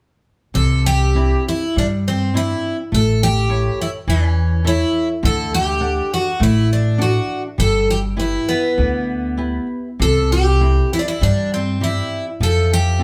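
A band playing together in one room sits in a moderate studio reverb, giving this tender, nostalgic fado-style ballad excerpt a natural, close-knit sound with a loose, rubato feel. Up front, a picked twelve-string acoustic guitar carries the melody with a shimmering, octave-doubled brightness and audible finger squeak, while a fingerpicked flamenco guitar supplies warm accompaniment. Underneath, a pizzicato upright bass adds a woody, growly low end as the chords move from Cadd9 through A, D and G6 before returning to C and closing on F.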